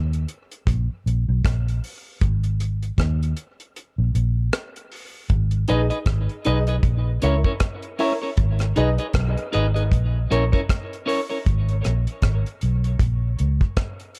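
A muted, round electric bass and a dry, deep reggae drum kit of kick, hi-hat and rim click open this heavy, hypnotic dub reggae excerpt at 78 BPM in G# minor, with a swung sixteenth-note feel. The opening is a break built on bass and drums, and the kick drops out from 3.8 to 5.3 seconds before the band settles onto G# minor. At 5.7 seconds a clean, picked electric guitar enters with dub echo, alongside woody upright piano stabs that also carry dub echo and sit in the background. The chords rock between G# minor and A# diminished, closing on A# minor, while the punchy, foam-muted bass stays up front with the tight kick. The production is dark and warm, with little reverb, giving the groove a dense, grounded weight.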